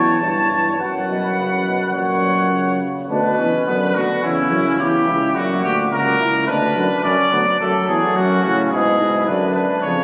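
A straight 4/4 pulse at 106 BPM drives this elegant, lively classical canzona for brass ensemble in B minor, taken from a longer piece, with imitative lines woven by four players throughout. A punchy trumpet with light vibrato carries the melody up front, a warm flugelhorn with vibrato sings the second line, a clear trombone supplies accompaniment, and a mellow, close-miked bass trombone anchors the bass, while the upper three sound distant and roomy. The phone recording is bathed in a long, wet cathedral reverb, and a new section begins at 3.1 seconds, built on minor and diminished harmonies.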